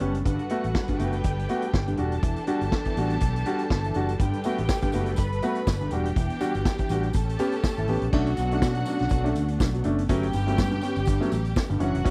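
A vintage drum kit, up front with a punchy kick and dark cymbals, drives this danceable disco cut with a light sixteenth-note swing, joined by a round, amped fingered electric bass, an intimate concert grand piano with audible action noise, a clear, focused string section holding sustained chords in the background, and a woody, distant violin section playing a second line from 0.3 seconds, while a jingly tambourine sits close but in the background from 4.2 to 11.7 seconds, set within a dry, close 1970s-style small-room sound.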